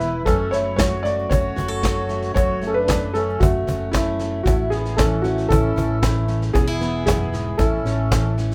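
A steady, straight 4/4 pulse at 115 BPM comes from a vintage brush drum kit, its punchy kick and medium-tuned snare sitting in a pumping studio room with a rolled-off top, and a snappy, close and dry cajon played with hard hands joins at 0.3 s. This gentle, warm acoustic folk excerpt in A major, cut from a longer piece, moves through F#m, A, E and back to A over about 8.5 seconds. A felt-muted upright piano carries the melody with a soft, intimate, thin felt tone, while a reedy, sweet accordion with light tremolo tuning and a band-limited, vintage character plays a second line beneath it. A jumbo steel-string acoustic guitar, fingerpicked and full-bodied with audible finger squeak, supplies the accompaniment, and a fretless electric bass adds a dark, round, amped low end. Light reverb surrounds the ensemble.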